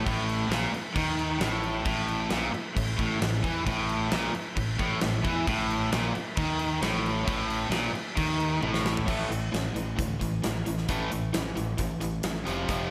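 Two bright, picked overdriven guitars, one crunchy and up front and the other a cranked stack tucked behind it, open this aggressive, heavy hard rock fragment with a low riff over a growly fuzz bass and a very quiet, gritty tonewheel organ holding thick chords through a slow rotary speaker, while a huge arena drum kit with a fat snare and punchy kick pounds in a straight 4/4, fires a fill at 8.6 seconds as the organ drops out at 9.0 seconds, and drives on into a new section in a big, moderately reverberant hall.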